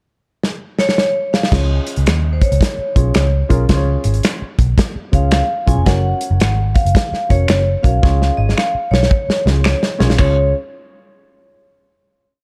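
A natural country drum kit opens with a fill at 0.4 seconds, its tight kick and medium-tuned snare driving an uptempo 1960s-style soul beat at 111 BPM with a swung feel and the snare on all four beats, before a ringing, metallic vibraphone struck with hard mallets carries a motif-based melody of call phrases with a slow motor vibrato. From 1.5 seconds a round, foam-muted electric bass plays a syncopated, melodic line with muted ghost notes alongside a mellow, woody upright piano pushing close-voiced chords with grace notes, and band-limited finger snaps join at 2.1 seconds. This uplifting, danceable whole piece in Db mixolydian moves from Db to Gb and back, with a second drum fill before the final chord and a dark, warm studio sound.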